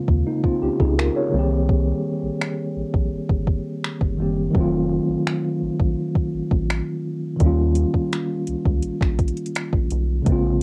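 A mellow tine electric piano with a cassette-tape tint opens this longing, moody contemporary R&B fragment, moving through Bbm9, Cm7, F7b9 and Eb7 over a rubbery, hollow square bass with a nasal filter pluck and a soft-kicked, overdriven electronic drum kit of finger snaps, metallic hats and kick that sits up front, in a dry home cassette recording.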